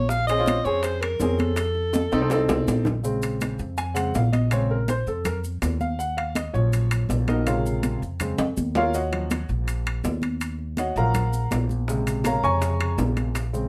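Sophisticated and driving, this Afro-Cuban jazz excerpt opens with a brief clear alto saxophone line full of vibrato and scooped notes over growly, woody pizzicato upright bass, hard-handed congas, ringing metal-shell timbales, grainy maracas and very quiet bongos, before an intimate concert grand piano with audible action noise and deep bass takes a solo from 3.0 s, and the bongos return at 11.9 s.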